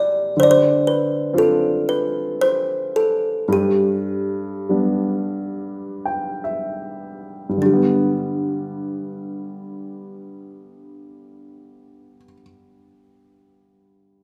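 This Celtic folk slow air, taken from a longer piece, moves in a rubato 3/4 at roughly 37 to 62 BPM in G mixolydian, tuned slightly high to A4 = 441 Hz, and carries a pastoral, tender mood. An up-front kalimba carries the melody between D4 and D5, its plucked tone bright, ringing and hollow, with a clear thumbnail attack and a woody box resonance. An upright piano, also close and intimate, supports it across a broad register from G2 to G5, its natural sound including audible action noise. The opening passage gradually slows as the harmony moves from Dm7 to G, and the piano adds a fill from 5.3 to 7.6 seconds, closing out the first section. The kalimba stops at 12.3 seconds, leaving the piano to ring on alone in a generous, wet recital-hall reverb.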